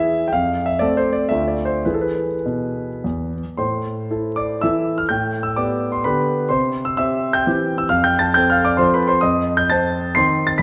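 Wistful and capricious, this brief classical fragment is a romantic triple-time dance with dotted rhythms, played with free rubato and cut from a longer piece. A solo concert grand carries it alone, sounding clear, polished and intimate, with deep bass, audible action noise and an up-front presence as its harmony drifts from F and D minor through A minor toward a closing F7. A moderate scoring-stage reverb surrounds the instrument, while vinyl crackle lends the recording an aged patina.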